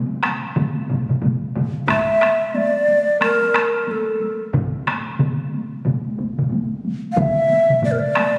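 A swung 16th-note feel drives this powerful, ceremonial Japanese traditional piece at 91 BPM in 4/4, played by a taiko drum ensemble. Several layers of taiko, struck with heavy and hard sticks and mostly heard close, sound together from the opening moments, along with a solo taiko drum that sits a touch higher in the mix than the other drum layers. At 1.9 s a breathy, hollow shakuhachi enters with a soft attack and straight tone, carrying the melody between A4 and F5 up front and remaining the most prominent voice until the end. A quieter taiko layer, close and dry, joins at 0.9 s and drops away at 7.4 s, while the rest continue together through to the close of this short cut from a longer piece. The whole is bathed in a wet, large-stage reverb and carries the compressed, roomy character of a phone recording made in the space, with a club-like ambience.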